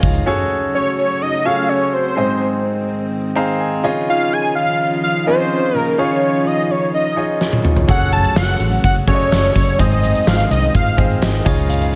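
Uplifting and nostalgic, this 1980s-style pop passage, cut from a longer piece, opens with a polished concert grand piano played up front, its deep bass, long sustain and audible action noise giving the accompaniment an intimate feel. A silky string machine holds soft, slow-blooming chords beneath it, thickened by ensemble chorus. From 0.7 seconds a bold, detuned unison lead carries the melody with vibrato and tape echo, sitting prominently in the mix, while the piano adds a fill along the way. A huge arena drum kit with a fat snare, punchy kick, toms, hi-hat and tambourine comes back with a fill at 7.4 seconds, drenched in gated reverb. At 7.9 seconds a dark, round, foam-muted fingered electric bass and a grainy, very quiet egg shaker join, and a dreamy FM bell with chorus and tape echo glimmers in the background in brief touches at the start and near the close.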